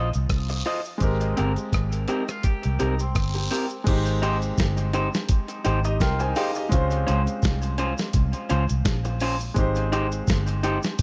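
An 84 BPM lovers rock groove in 4/4 with a light sixteenth-note swing rides on a gritty, compressed sampler-style drum kit with a thumpy kick, rim click, hi-hat and crash. A dark, round, foam-muted bass sits up front beneath sweet, tender Ab major harmony moving through Dbmaj9, Abmaj9, Dbmaj7 and Abmaj7. A slightly broken-up, lo-fi electric guitar plays stabs carrying dub echo, an intimate concert grand piano with audible action noise fills out the accompaniment, and cabasa and guiro, also echoed, sit low in the mix, while from 2.1 to 6.7 seconds a clean, twangy guitar adds arpeggios to this dry, close-sounding cut from a longer piece.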